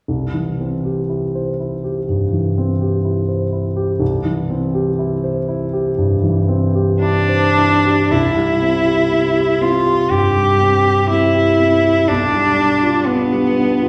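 A dark, mellow baby grand piano with long sustain opens this lyrical, serene romantic classical excerpt in a flexible rubato, and at 7.0 seconds a single rich bowed cello enters up front with a smooth, even vibrato-laden melody, the duo heard from further back in a recital hall whose reverb adds a lingering glow.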